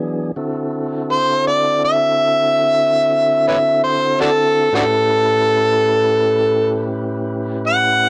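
A slow, steady 12/8 pulse sets up this laid-back, swaggering blues fragment, cut from a longer piece. A tonewheel organ holds sustained chords from the start, its clean, clear tone turning gently through a slow rotary speaker beneath the lead. At 1.1 seconds an amplified, overdriven harmonica takes the solo up front, gritty and full of vibrato, with soft attacks, scooped notes and percussive tongue slaps. Its phrasing leans toward a jazz style while staying rooted in the blues. The harmony moves from D9 to A9 at 4.7 seconds, and light reverb gives the pair a little space around them.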